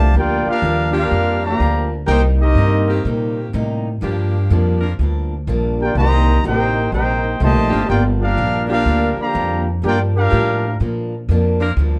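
A brassy, dramatic big band swing passage cut from a longer piece opens with the trumpet section, trombone section and upright bass sounding together at 124 BPM in G minor, with a 4/4 swing feel. The trumpets carry the melody up front with a loose, lightly vibrato-tinged jazz sound, while the tight, mellow trombones add a soft-attacked second line beneath them. A growly, woody pizzicato upright bass sits up front and runs through to the end at 12.0 seconds, joined almost at once by a boxy picked steel-string acoustic guitar accompanying in the background. At 0.9 seconds a bright, tight saxophone section enters with sustained chords, filling out the harmony as it alternates between Gm7 and Cm7. The trumpets and trombones stop at 10.8 seconds, leaving the rhythm parts and saxophones to close out, all set in a dark production with moderate large-studio reverb.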